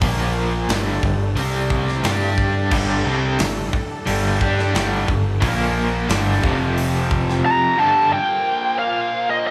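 A live-in-one-room sound with a moderate large studio reverb wraps this driving, aggressive hard rock excerpt in G minor, moving at 89 BPM in a straight 4/4. Up front, a tight metal drum kit with a tight kick and medium-tuned snare works crash, hi-hat, kick and snare alongside a warm, fuzzed and overdriven fingered bass until 7.4 seconds. Behind them, several picked rhythm guitars stack the riff: a crunchy, double-tracked overdriven part with tremolo, a bright overdriven part that runs the full length, and a tight distorted guitar that joins at 2.7 seconds. A lush, warbling vintage pad of detuned sawtooth chords with chorus sits very quiet underneath, sustaining throughout. At 7.5 seconds a biting lead guitar steps forward with a high overdriven melody, carrying the short closing passage over the pad and the rhythm guitars.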